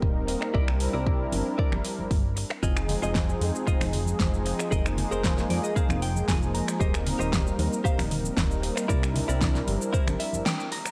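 Nu-disco at 115 BPM, sleek and groovy and cut from a longer piece, with a smooth, detuned sawtooth pad up front carrying chorus, sidechain pumping and tape echo over a glossy pulse-wave synth bass and a punchy electronic kick, while a pop kit of fat snare, metallic hi-hat, cabasa and finger snaps backs a compressed, clean direct-recorded electric guitar riff with analog chorus and tape echo that adds fills at 5.2 and 9.9 seconds, bright congas and bongos sit in the background, and the dry, gritty mix with digital ambience closes on a band accent at 10.5 seconds.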